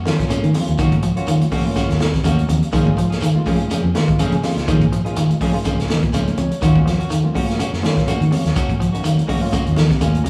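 The sound is of a band playing live together in one room, wrapped in a moderate large studio reverb. This intense, funky afrobeat cut rides a lightly swung sixteenth-note feel, with a vintage drum kit giving a punchy kick, a medium-tuned snare and hi-hat, its top rolled off. A fingered electric bass sits dark and round, foam-muted, while an electric guitar through a small old amp plays twangy, slightly broken-up arpeggios and a clean electric guitar adds picked stabs through spring reverb. Bright, high-tuned congas with hard hands sit very quiet, and a grainy shekere lingers in the background. Further back, an overdriven tine electric piano barks through a combo amp with gritty accompaniment, stepping out for fills at 5.9 and 9.0 seconds. The harmony moves from Ebm7 to Db6, returning to Ebm7 at 6.6 seconds.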